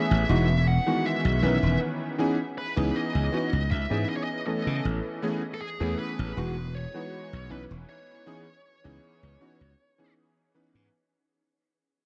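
Vaporwave with a woozy, melancholic mood, this short clip from a longer piece drifts at an unhurried pace in a straight 4/4 feel. A bright electric grand piano carries the accompaniment up front, its cutting, clangy tone thickened by analog chorus, while a glassy slap bass sits directly beneath it with a growly, punchy edge. Floating further back, a dark, high-gain lead guitar carries the melody with a distorted, picked sound smeared by tape echo, dropping out at 10.1 seconds. The harmony moves through lush seventh and ninth chords, cycling from Emaj7 to C#m9 and Amaj7 before returning. A huge ambient reverb and a dusty cassette-tape character lend the production a dark, hazy cast, and the whole passage plays under a fade-out.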